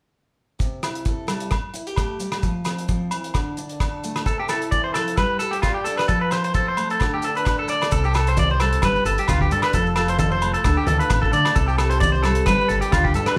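A danceable, carefree highlife groove opens at 0.6 seconds with a full-bodied dreadnought acoustic guitar, its picked chords carrying audible finger squeak, over a tight, polished 70s drum kit of hi-hat, kick and rim click, with grainy maracas and ringing agogo bells sitting in the background. At 4.3 seconds a twangy, slightly broken-up electric guitar comes up front with bright picked arpeggios. At 7.9 seconds a round, punchy fingered bass and low-tuned, thick-skinned congas join, and the whole band plays live in one large studio room with moderate reverb.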